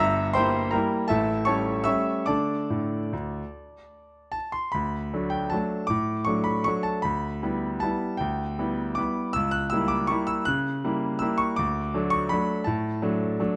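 Swaying in a rubato 3/4 between 139 and 174 BPM, this elegant, wistful classical piano waltz, cut from a longer piece, features a solo concert grand tuned to A4 = 437 Hz, brilliant and up front with a deep bass reaching from G1 to F#6, settling from an unsettled opening into D major at 4.7 seconds, all captured with close, detailed microphones and a light touch of reverb.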